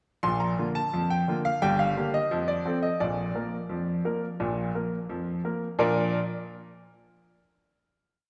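A clear, worn grand piano plays a lively, jaunty ragtime miniature alone in 2/4, its up-front single-line melody riding over a stride bass through a brief Bb–Gm–F–Bb progression before settling on a final chord at 5.8 seconds, all bathed in the lingering reverb of a church or concert hall.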